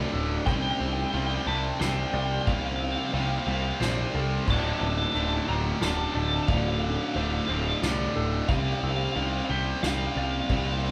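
Post-rock with a brooding, melancholic mood, this brief cut from a longer piece moves in a straight 3/4 over sustained chords drifting from C7sus4 to Dm7 and back. A fuzz-drenched picked electric bass sits up front, punchy and overdriven, while a bright distorted guitar and a further overdriven guitar play a riff above it, the latter set in the background. Over this, a twangy twelve-string electric guitar carries a high, clean melody from 0.5 seconds, with spring reverb adding ring to its bright tone. A clean, twangy guitar with spring reverb plays arpeggios in the background, and a dark, fingered guitar adds very quiet arpeggios higher up. A shimmering ambient pad enters at 0.8 seconds with ethereal, detuned, granular sustained chords, while a distant soft-mallet drum kit with dark cymbals and a punchy kick plays in the background. The band sounds live in one room, with a wet studio ambience around them.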